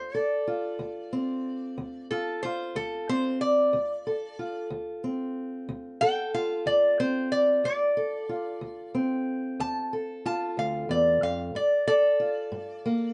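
Acoustic country blues for two guitars, this soulful, brooding fragment of a longer piece moves at a slow 62 beats per minute in a straight 12/8, set in D minor and tuned a touch flat of standard pitch. A lap resonator guitar carries the melody from start to finish, played with slide and fingerpicks in a bright, metallic, nasal voice that sits up front, ranging from A4 to A5. Beneath it, a fingerpicked steel-string parlour guitar provides the accompaniment, its dark, boxy tone also up front and reaching from D2 to A4. The harmony rests on Dm7 before shifting to Gm9 at 11.5 seconds. Light reverb frames the two instruments, and the top end is gently rolled off.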